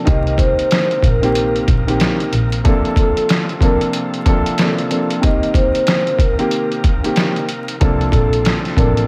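Boom-bap hip-hop in C dorian, this moody, reflective fragment of a longer piece moves at 93 BPM in 4/4 with a swung sixteenth-note feel. A gritty, pitched-down, sampler-style drum kit sits up front with a thumpy kick, a medium-tuned snare and hi-hat, sounding compressed and re-recorded in a small room. A dark, mellow baby grand piano carries the accompaniment with short sustain, while a vibraphone played with soft mallets takes the melody, its metallic, ringing tone shimmering with fast motor vibrato. Behind them, a reedy tonewheel organ holds sustained chords through a fast rotary speaker, its key click audible in the background. A bowed double bass, airy and intimate with a soft attack and light vibrato, appears from 0.1 to 2.6 seconds and returns at 7.8 seconds as the harmony moves between Cm7 and Bbmaj7 colours. Light reverb, small-room ambience and vinyl crackle give the whole a close, intimate feel.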